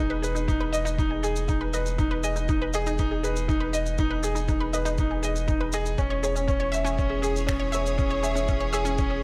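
A straight 4/4 pulse at 120 BPM comes from a muffled, thumpy, pitched-down kick and layered electronic shaker and finger snaps, while a deep, round sine sub bass holds E1 with sidechain pumping in this hopeful, tender piano and strings electronica cut from a longer piece in E major. A clear, up-front grand piano riff with short sustain and digital delay sounds alongside bright, detuned sawtooth pluck arpeggios carrying chorus, delay and pumping, all on Emaj7. At 6.0 s the harmony moves to C#m/E as a rich, bowed studio string section enters with smooth, sustained vibrato chords, pumping beneath light reverb and digital ambience.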